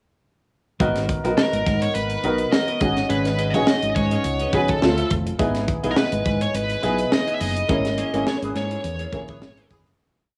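A crisp sixteenth-note funk groove at 104 BPM with a light swing drives this bittersweet, slick 1980s jazz-funk pop piece in G# minor, where a punchy, high-tuned kit and an agile, bright fingered bass support up-front baby grand piano chords with audible action noise, lush chorus and plate reverb, a dark, clean rhythm guitar in the background, a distorted high-gain lead guitar playing motif-based call phrases from 1.4 seconds, and a distant horn section adding punches with tape echo from 8.4 seconds, as a band accent and fade-out close the whole piece, recorded at home on cassette with small room ambience.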